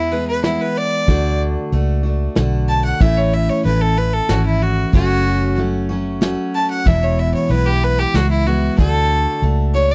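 A rich, biting fiddle takes the solo throughout this down-home, nostalgic honky-tonk and classic country excerpt, its bowed line carrying light vibrato and an airy, earthy edge while moving between E4 and A5 in A major. Underneath, a full-bodied picked steel-string acoustic guitar and a dark, round, foam-muted electric bass support a straight 3/4 feel at 94 BPM over chords moving from E through D, A and F#m, with a brushed drum kit of kick, snare and hi-hat entering at 0.4 seconds with a rolled-off top. The dry, close 1970s-style studio sound keeps every part up front.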